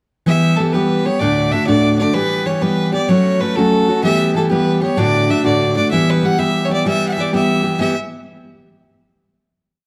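A bright, intense fiddle with light vibrato carries a motif-based melody up front over a full-bodied picked dreadnought guitar strumming eighths in open chord shapes, giving this short, spirited Celtic slide in E dorian a driving, straight 12/8 pulse at 127 BPM, moving through Em, D and F#m in a dark production with moderate hall reverb before settling on a final chord that rings from 7.8 to 9.7 seconds.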